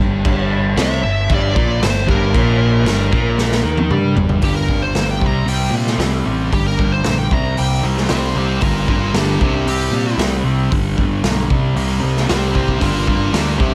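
A smooth, overdriven lead guitar carries the melody from 0.8 seconds, moving into a solo at 4.4 seconds that runs to the end of this fragment of a quiet-loud alternative rock piece in G minor. Beneath it, a double-tracked fuzz guitar plays the riff up front, joined by a growling, picked electric bass with a bright, overdriven edge. A raw garage drum kit, saturated and gritty with a boomy kick, dark cymbals and a pumping small-room sound, drives the straight 4/4 groove at 114 BPM and plays a fill just before the solo. At 4.4 seconds a clean, twangy guitar enters in the background with fingered, compressed arpeggios as the chords move between G minor and C-based colours such as Cadd9, Cm7 and Csus2. The mood is dark and angsty, set in a light reverb.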